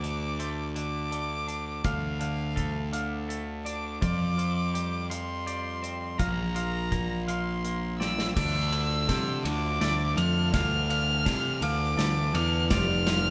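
Post-rock at a slow 55 BPM in 6/8, this cinematic, cathartic passage in D minor is cut from a longer piece and sounds like a band playing live in one room with moderate studio reverb. A muted violin carries the melody, its veiled, con sordino tone shaped by vibrato and a soft attack, heard close as a single bowed player. Beneath it, a clean, compressed twelve-string electric guitar picks low arpeggios while a twangy, finger-played electric guitar adds higher arpeggios in the background. Up front, a punchy picked bass with overdriven fuzz anchors the harmony, and a big acoustic rock kit with bright cymbals, a medium-tuned snare and a punchy kick drives the pulse. The chords move from Dm through Fsus2 and Bbsus2, and a drum fill at 8.0 seconds leads into a build-up where a reedy, breathing hand-pumped harmonium enters at 8.4 seconds with sustained chords in the background.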